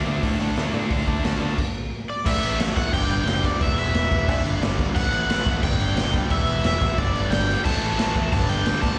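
Up front, punchy and gritty, a raw garage drum kit drives this rowdy, rebellious punk rock at 178 BPM in G major. Alongside it play a distorted electric guitar riff with slapback echo, a tight distorted guitar riff in the background that drops out at 1.6 s and returns at 7.7 s, and a growling overdriven bass. From 2.1 s a bright, cranked stack guitar melody arrives with slapback echo and delay. The whole mix sounds like a live gig through the venue's PA with small-room and recital-hall reverb, punctuated by a brief stop and a late drum fill.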